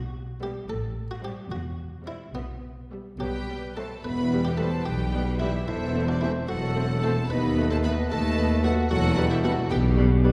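Heard from further back on a wet scoring stage, this playful, whimsical film cue in E minor moves at 74 BPM in 6/8, with a muted, lute-like harpsichord and smooth bowed violins carrying the melody over a second violin line, soft viola accompaniment, a distant cello section and an up-front double bass section, before an airy flute group and punchy French horns arrive at 3.2 seconds, followed by clarinet, roomy tuba, a faint cor anglais and mellow bassoon from about 4.0 seconds, lending the quirky, magical passage a fuller woodwind and brass colour.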